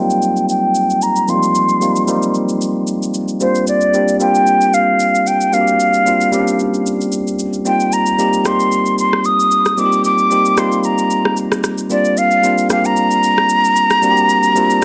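Warm and relaxed, this amapiano excerpt in Bb major moves at 113 BPM in 4/4 with a light 16th-note swing, as an airy, hollow jazz flute carries the up-front melody with gentle vibrato through a low-pass filter and digital delay over bright, bell-like tine electric piano chords alternating between Eb6 and Bb6, while a subdued, produced electronic shaker and rim click join at 0.1 seconds, and a filter sweep runs the full 14.8 seconds within a light reverb and digital ambience.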